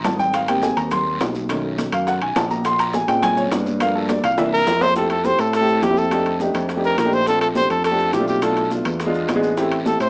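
Afro-Cuban jazz in F major, lively and danceable at a brisk 208 BPM, opens with a short drum fill as a natural-sounding baby grand piano takes a solo over bright, punchy fingered electric bass, ringing metal-shell timbales, high-tuned congas, very quiet tight bongos, and raspy guiro and grainy maracas in the background. At 4.5 seconds a vibrato-laden trumpet enters up front, carrying the melody over chords like Fmaj9, F13 and E7b9. The whole fragment sits in a moderate studio reverb and sounds like worn, warbling old cassette tape played through a small speaker.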